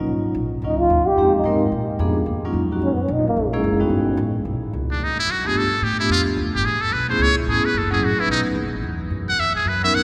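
A brisk 4/4 swing at 219 BPM drives this cool, moody small-group jazz piece in E-flat minor, cut from a longer performance, with a woody pizzicato upright bass and a ringing vibraphone played with medium hard mallets and motor off comping beneath moving altered and extended chords. A dark, breathy trombone solos from 0.7 to 3.5 seconds with whispered, soft-attacked phrasing and light vibrato, and a muted trumpet takes the melody from 4.9 seconds with a buzzy, brilliant metal-mute tone. The whole group sits in a cathedral-like church or concert hall whose long, wet reverb adds a spacious, moody glow.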